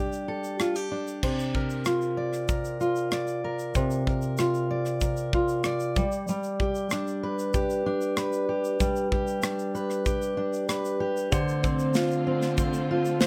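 A dark, full-bodied fingerpicked steel-string acoustic guitar provides the accompaniment in this sunny, carefree acoustic pop excerpt in a straight 4/4, sitting up front beside an airy, polished studio drum kit of punchy kick, medium-tuned snare, rim click, shaker and crash cymbal. The harmony moves from Gsus2 through Bb/C to G under light reverb, and at 11.3 seconds a lush, bowed symphonic string section enters with expressive vibrato on a sustained Dm7 as the clip is cut off.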